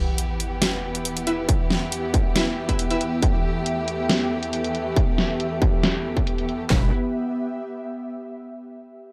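A half-time 4/4 groove drives this heavy, menacing wobble dubstep fragment, which opens on an electronic sub drop impact as rich, bowed strings with vibrato and an ethereal, airy pad pump beneath a low-pass-filtered hi-hat and snare layer, while a distorted kick, handclaps and a huge snare sit up front and bold, punchy orchestra-hit-like synth stabs ring out with tape echo, before a detuned square-wave wobble bass enters at 6.7 seconds.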